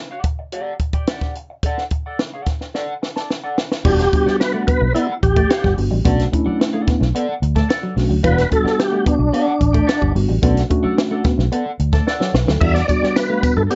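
A sly, funky slice of funk in a straight 4/4, opening with a clean picked electric guitar run through wah and lush chorus, backed by a compact cocktail drum kit with dark cymbals, a high-tuned snare and a tight kick, all dry and up front. A drum fill at 2.7 seconds leads into the fuller groove, where a guitar riff at the edge of break-up, slightly broken-up and compressed in its low register, enters at 3.8 seconds, joined at 3.9 seconds by a foam-muted fingered electric bass, round and punchy. A mellow tine electric piano adds stabs through its built-in speakers, while a tonewheel organ carries the melody up front, lightly overdriven with chorus vibrato, key click, a fast rotary speaker and slapback echo. The harmony moves between Em9 and Bm7, and another drum fill sits near the end, where a jingly tambourine slips in quietly in the background at 12.9 seconds. The mix has light reverb and a dark, rolled-off top, giving the cut a snug, intimate feel.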